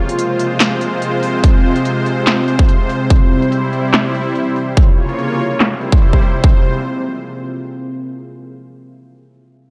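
A half-time, lightly swung groove drives this menacing, chaotic slice of heavy wobble dubstep, cut from a longer piece: an up-front, tape-warm dance kit of punchy snare, crisp low-passed hats and handclaps rides a filter sweep, with a layered electronic kick joining at 1.4 s. Lush, detuned supersaw chords pump against the sidechain through a minor progression that moves to C and a darker minor chord before settling home. Beneath, a deep, moody sawtooth-and-sine pad with a sub octave, chorus, built-in reverb and a moving notch breathes with the same pumping and lingers alone until 8.1 s in a light digital ambience.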